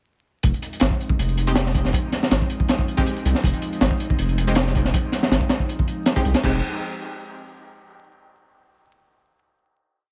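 The recording has a raw, atmospheric sound: a small room ambience with vinyl crackle, and a crunchy, gritty breakbeat drum kit placed up front. This short drum and bass and jungle piece in F minor runs at 160 BPM. The drop hits at 0.4 seconds on an Fm7 chord, with the heavily chopped breakbeat, its punchy kick, high-tuned snare and dark cymbals, arriving alongside a deep, thick sub bass whose tube saturation gives its dub-style line a heavy weight. An airy, breathy pad with chorus sits in the background, holding mellow sustained chords from 0.6 seconds. Bold, layered, orchestra-hit-like synth stabs enter at 1.5 seconds, firing sparse chord shapes moved in parallel that trail off in reverb and dub echo. After the drop, the piece settles on a final chord from 6.4 seconds.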